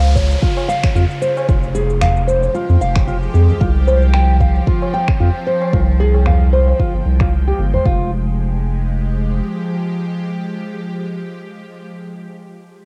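A 113 BPM groove with a 16th-note swing drives this earthy, mystical organic downtempo piece in F minor, cut from a longer track. A deep electronic kick, a filter-swept layer of electronic cabasa and finger snaps, and a low-tuned tabla sitting in the background carry the beat, while a round, dark analog bass pumps up front beneath fingerpicked nylon-string guitar arpeggios with audible finger squeak and analog delay. A bright, detuned, string-like drone with phaser and vibrato sustains chords moving from Dbmaj7 through Fmadd9 and Csus4, a downlifter sweeps through the opening 3.6 seconds, and the drone carries on alone after the other parts drop out by 9.4 seconds, all captured as a home recording on cassette.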